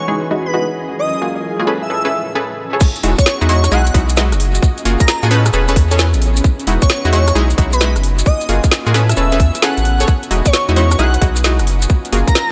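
Echo-heavy and lightly reverberant, this soulful, bouncy two-step UK garage excerpt opens with a filter sweep on punchy, wave-folded chord stabs over a dreamy, airy lead with vibrato and portamento, a breathy detuned pad, and a cloudy granular pad in the background, until the drop at 2.8 seconds brings in a tight, up-front electronic kick, a garage kit of woody snare, metallic hi-hats, rim clicks and crash cymbal, and grainy maracas with dub echo, joined by a deep, saturated sub bass from 3.0 seconds.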